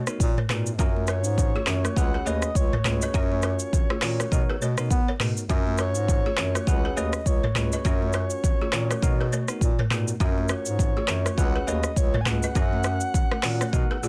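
An up-front afro-pop drum kit drives this sunny, breezy afrobeats fragment at 102 BPM in 4/4, its electronic, produced sound built from a deep kick, metallic hi-hats, handclaps, rim clicks, shaker and toms, with a tape-warm finish and lightly swung sixteenths. Beneath it a bass clarinet carries the low end in a classical style, sitting prominently in the mix. A soft, breathy flute-like synth lead sings the melody in F# major with sustained, vibrato-tinged notes, coloured by chorus, plate reverb and tape echo. A bell-like tine electric piano supplies clean, bright accompaniment through plate reverb, cycling through Bmaj7, F#maj7 and C#7sus4, while a woody, buzzing balafon played with rubber mallets repeats a dry, airy riff from 0.4 seconds. High-tuned acoustic congas ring in the background with a vintage, band-limited tone, all held together by light reverb and a dense, heavily limited modern master.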